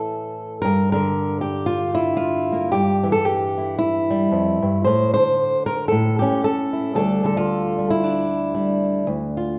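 Wistful and reflective, this short solo folk passage, cut from a longer piece, features a fingerpicked steel-string acoustic guitar with a dark, up-front tone and a gentle swing to its eighth notes. Moving through Gm, Fmaj7sus2 and A before settling on Dm around 7.0 seconds, the guitar rings into a lush recital-hall reverb that gives it an auditorium-like sense of space.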